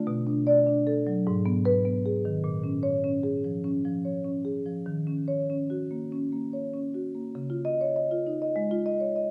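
Warm and flowing, this short excerpt from a longer contemporary classical piece for solo marimba moves with uneven, rubato beats that give it a breathing, unhurried feel. The marimba, played with medium mallets on rosewood bars, has a woody, vintage tone with a band-limited character, and it sits up front in the sound. Its range stretches from Ab2 up to Eb5, and a wet recital hall reverb gives each note a soft halo. The harmony drifts through minor-seventh and minor colours like Cbm7, Abm, Bbm7 and Ebm7 before settling at 7.4 seconds into a brighter Dbadd9 as a new section begins. The passage closes at 9.3 seconds, leaving an impression of a reflective moment captured mid-performance.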